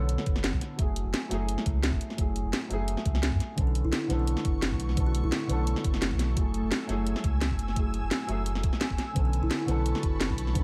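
This rolling, melancholic liquid drum and bass excerpt opens on a dark, mellow concert grand piano with lush chorus and tape echo, a round, deep sine sub bass, and a brief woody kalimba pluck. Within a fraction of a second an up-front electronic kit arrives with a cracking snare and bright hats, joined by a knocking, layered kick, both re-recorded in a small room. The groove sits at 172 BPM in 4/4 with a light swing on the 16ths, moving in B dorian between Bm9 and F#m9. Set back in the background, the kalimba returns at 3.7 seconds with soft, ringing, hollow-box phrases carried on tape echo. From 4.3 seconds an ethereal, airy pad of detuned unison sawtooth and triangle tones fades in slowly with ensemble chorus and its own reverb, adding long, sustained chords beneath a light overall reverb.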